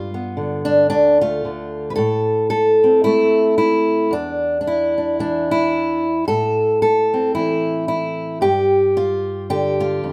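A fingerpicked steel-string acoustic guitar carries this short folk excerpt alone, its auditorium-bodied tone sitting up front with a light reverb around it. At 112 BPM in 4/4 with a gentle swing on the eighths, the wistful, reflective playing ranges from D2 to B4, opening on G7 and Dm before settling into a passage from 2.0 seconds that moves through Am, Dsus2/E and back to Am, closing on G5. The tuning sits slightly below standard pitch, at A4 = 439 Hz.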